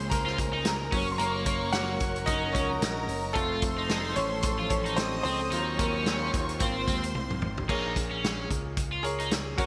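A bright grand piano leads this earnest, driving excerpt of 1980s-style piano-driven pop in Bb minor at 111 BPM with a 16th-note swing, its solo running until 7.7 s over a punchy picked electric bass, a lush bowed violin section with delay, a very quiet sustained string section, a cranked overdriven guitar riff with analog chorus, and a gritty, saturated indie drum kit with gated reverb whose fill at 7.1 s leads into a new section, all set in a lush hall.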